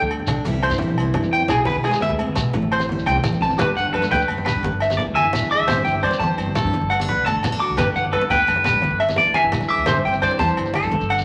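This joyful, danceable highlife guitar-band excerpt in 12/8 opens with a bright, finger-squeaking steel-string acoustic guitar, a woody, growly pizzicato upright bass and low-tuned congas struck with soft hands, joined almost at once by ringing agogo bells in the background and a grainy shekere, while an up-front, slightly broken-up electric guitar spins arpeggios through spring reverb from 0.6 seconds and a clean, twangy electric guitar with phaser carries the melody from 3.6 seconds, set in a moderate studio reverb.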